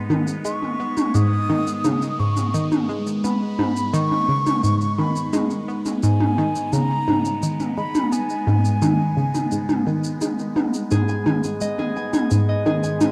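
A dark production bathed in a long plate reverb carries this cosmic, mysterious stretch of ambient, sequencer-driven space music, resting on a single minor chord. Up front, a round, detuned analog pluck repeats a riff through chorus and delay, while an evolving wavetable pad holds morphing chords under a phaser, and overdriven electronic toms and shaker, re-recorded in a small room, add echoing percussion. An airy wooden flute with vibrato carries the melody through shimmer reverb from 0.4 seconds to 10.2 seconds, and a ringing, fingerpicked concert harp enters with arpeggios at 10.9 seconds.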